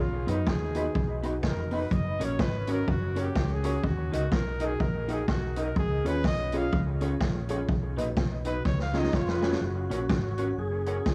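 A breathy, scooped trumpet solo with dub echo opens this cheerful ska clip in F# major at 125 BPM with a swung feel, over a dark, round hollow-body bass, a boomy, up-front street-band drum kit that plays a fill at 8.7 seconds, a slightly broken-up lo-fi guitar with analog chorus, and a woody, slightly detuned upright piano tucked in the background, before a lightly overdriven tonewheel organ with slow rotary joins with its own melody at 8.9 seconds in a small club room.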